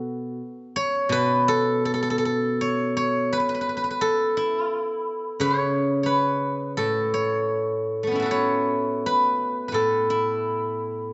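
Pastoral and elegant, this short cut from a longer piece of Chinese traditional solo plucked-string music moves freely in 2/4 at around 79-90 BPM, rubato, in the A gong mode. A single steel-string zither, played with fingerpicks, carries everything up front from A2 to C#5, its acoustic tone warm, silvery and ringing, with a new section beginning at 2.6 seconds. Moderate recital hall reverb surrounds the instrument, and the top end stops at about 7.9 kHz.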